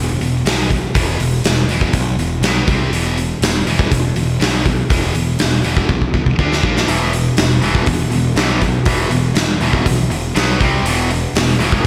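Hard rock with a driving, aggressive mood, opening on a bright high-gain distorted guitar riff and a fuzzy, overdriven picked electric bass, with both guitars sitting in the background behind a big, up-front acoustic drum kit whose punchy kick, medium-tuned snare and hi-hat have a rolled-off top. After a drum fill at 5.9 seconds, a second overdriven electric guitar joins the riff at 6.9 seconds, thickening the power-chord progression centred on E. A lush hall reverb gives the whole cut a big arena sound.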